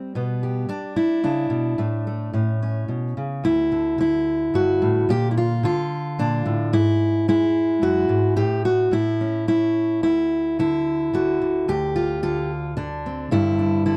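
Nostalgic and peaceful, this short folk excerpt features a lone fingerpicked steel-string acoustic guitar in a straight 3/4, its auditorium-bodied tone sitting up front in a dark production with light reverb. Across roughly 14 seconds the guitar ranges from D2 to G4, moving through colorful harmonies such as Dadd9, Bb, E/G# and Dmadd11, with brief chordless passages along the way before settling on a G5.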